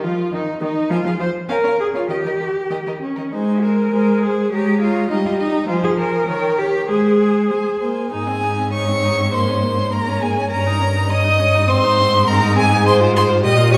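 Set in a quick 2/4 at 101 BPM, the pulse moves with a rubato give, lending this classical-period string quartet movement in Ab major a restless, stormy character. Four bowed players, each on a single line with rich vibrato, carry the music: the first violin takes the melody from 0.1 s, ranging from Eb4 up to Eb6 with a smooth, even tone, while the second violin supplies a focused second line between Eb4 and F5. The viola, placed up front, fills in the accompaniment from Eb3 to Ab4, and the cello holds the bass from G2 to C5, close and prominent in the balance yet carrying a slightly remote shading. The harmony begins on a bare unharmonized moment before moving through Bbm/Db, Eb, Ab, Fm and Eb7, and a new section arrives at 8.1 s that moves through Bbm7/Ab, Eb7/G, Ab and Fm/Ab. The group is heard from further back in a recital hall with a wet 1.3-second reverb, and the passage is cut from a longer piece.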